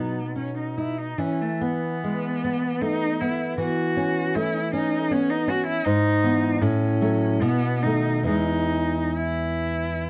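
A dark, warm production with light reverb frames this serene, lyrical romantic duo in E major, a short cut from a longer piece, moving in a rubato 3/4 at 66-82 BPM. A clear, focused bowed cello carries the melody with vibrato, up front, while a fingerpicked nylon-string classical guitar, also up front, supplies acoustic accompaniment throughout. The harmony moves from B through E, F#m/E, E/G# and F#m/A before a B7 resolves to E at 8.3 seconds.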